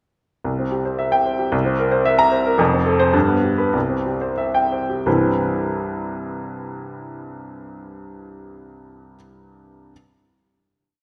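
A warm, intimate baby grand piano plays alone, up front with audible action noise, sweeping brilliant, sparkling arpeggios through a brief rubato classical virtuoso study that slows from 2.1 s before settling on a final chord at 5.1 s in a wet concert hall reverb.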